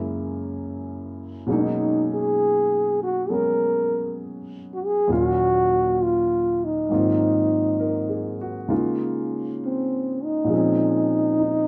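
A warm grand piano opens this slow, romantic late-night jazz fragment at 66 BPM in a swung 4/4, sounding a Gb9 before the dark trombone enters at 1.5 seconds to carry the melody up front with light vibrato and a smooth top. The piano accompanies close at hand through rich chords such as Cbmaj13, Ebm7, Ab13 and Db69, settling on Bbm9 near 10.5 seconds, and the brief passage is cut from a longer piece. Both instruments sit in a moderate, large studio reverb that gives the intimate duo a soft sense of space.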